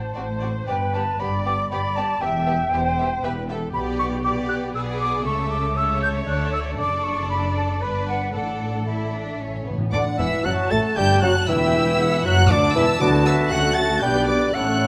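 Lively and graceful, this quick classical-period orchestral movement in triple time unfolds with flexible rubato, a rich, focused violin section carrying the melody over a distant, lush second violin line, an airy concert flute, warm violas and dark cellos and double basses, before very quiet hard-mallet timpani arrive at 8.3 s and a mellow clarinet, cor anglais, punchy bassoon and clear French horn chords join at 9.9 s, the ensemble set in a moderate concert hall reverb.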